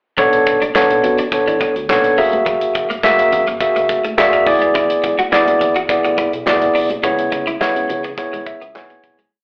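Opening at 0.2 seconds, this slick, late-night early-eighties boogie funk piece is built around an up-front tine electric piano playing syncopated drop2 chord stabs with slapback echo, grace notes and short fills around 3.9 and 8.2 seconds, over a fat, glossy chorused synth bass line with chromatic approach notes, a muted, compressed clean electric guitar line with ensemble chorus and slapback echo, a damped 70s drum kit with tight kick and snare layered with handclaps, and very quiet high-tuned congas, the mix coming across as a live gig through the venue's PA with club reverb and a telephone-like tone before fading out from 7.0 seconds.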